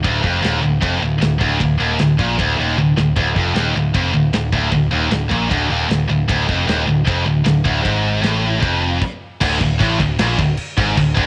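A pair of bright, high-gain distorted guitars drives this heavy, aggressive metal excerpt at 154 BPM, one guitar up front and the other further back, both playing a low riff over a growling, overdriven picked bass around D minor. A tight-kicked acoustic drum kit with a medium-tuned snare, heard through a cassette tape effect, throws in a fill at 2.8 seconds, and the whole band stops at 9.0 seconds before dropping into a half-time D5 section at 9.4 seconds. The sound is dry and close, with the character of a home cassette recording.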